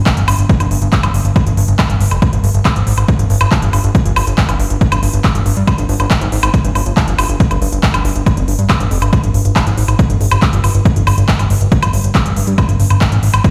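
A driving straight 4/4 pulse at 139 BPM anchors this alien, psychedelic trance cut, with a punchy, overdriven electronic kick sitting up front and a big-room kit of handclaps, crisp hi-hat and woodblock layered around it, both re-recorded in a large room. Beneath them a fat analog bass of sawtooth and square waves, thick and mellow with a fast attack, sustains through a moving notch between F1 and G2. The whole passage, cut from a longer piece, plays as a single section through a big sound system in a bare room, with little reverb of its own on the parts but a large studio reverb on the room.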